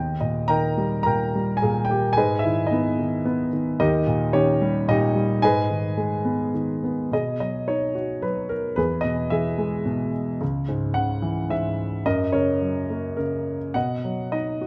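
Relaxed and hopeful, this excerpt of lyrical classical solo piano moves in 3/4 at about 109 BPM with a rubato feel. A single grand piano carries the whole excerpt from 0.0 to 14.7 seconds, its tone dark, mellow and smooth with a vintage character, placed up front and ranging from C#2 to A#5. It opens with a brief fill in the first half second before settling into a passage in G# minor, where the harmony moves from D# through G# minor and D#7 back to G# minor. At 7.1 seconds the music turns to B major, and the second section travels through B6, E, C# minor and F# before arriving on B. A moderate recital hall reverb surrounds the instrument, adding a gentle sense of space around the performance.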